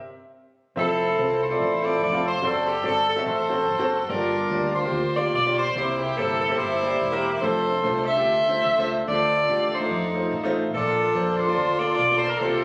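A swung 4/4 groove carries this hopeful, uplifting uptempo gospel excerpt, where after a silent opening the parts enter together at 0.8 s: a tight, up-front saxophone section with jazz-style vibrato and tape echo sings the melody over clear, intimate grand piano accompaniment with audible action noise, while a dark, round, punchy hollow-body electric bass sits low beneath them, all captured by a phone in a wet recital hall with club-like reverb.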